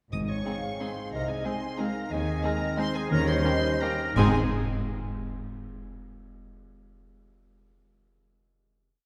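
A sweeping, festive orchestral ballroom waltz in 3/4 with a rubato lilt opens with lush, vibrato-rich violins carrying the melody, a clear, distant clarinet doubling the tune at the octave, mellow French horns holding sustained chords, ringing harp broken chords, cellos and double basses sounding the bass, and crisp timpani strokes on the bass notes. From 0.5 seconds an airy flute group adds a counter-melody, softer violins and violas fill in after-beat chords, and dark cymbal swells, crashes and bass drum strokes join at 2.1 seconds. The short piece moves through Ab, Ab/C, Ab/Eb and Eb7 before a band accent lands on a final Ab chord at 4.2 seconds, all heard from further back in a reverberant concert hall.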